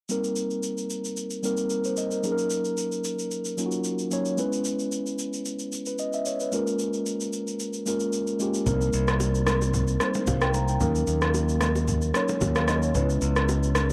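This deep, late-night amapiano clip opens at 0.1 s with a mellow tine electric piano and an electronic shaker and rim click, both up front and carrying a cassette-tape tint. The electric piano sounds clean, as if heard through its built-in speakers, and moves through Cm7, Ebm7, Dbm7 and Bbm7 chords. The layered, produced drum kit has the feel of being re-recorded in a small room, with a gentle swing in its sixteenths. At 8.7 s a bright, direct fingered electric bass enters up front, and ringing congas and bongos join further back in a live room. A light reverb and the soft haze of a home cassette recording tie the parts together until the clip ends at 13.9 s, an excerpt cut from a longer piece.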